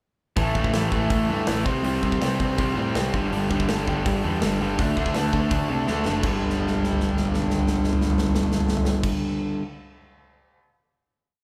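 A straight, fast punk groove at 165 BPM in 4/4 drives this short, rowdy and rebellious punk rock piece. A big, up-front acoustic kit with a punchy kick and bright cymbals powers the beat beneath two overdriven electric guitars, one biting and one crunchy and up front, both pounding out eighth-note power chords through A5, C5, G5 and D5, while a growly fuzz bass drives eighth notes underneath. After a drum fill, the band crashes onto a final G5 at 6.2 seconds as the drums keep filling, with the kit ringing on alone until 10.6 seconds in a lightly reverberant room that sounds like a band playing live together.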